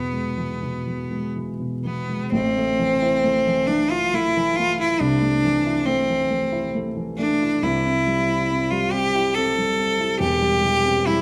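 A single bowed cello and a baby grand piano sound together from the opening moment in this solemn, yearning romantic duo, heard as a brief passage cut from a longer piece. The cello carries the melody up front with a bright, intense tone and light vibrato, singing in a mid register. Beneath it, the piano's dark, mellow accompaniment reaches down into the deep bass, sitting slightly lower in the mix and keeping an intimate, natural character with its action noise audible. The triple-metre pulse is uneven and pushed by rubato, while the harmony settles from E onto A minor around 2.3 seconds and then drifts toward C. A wet recital hall reverb surrounds the pair.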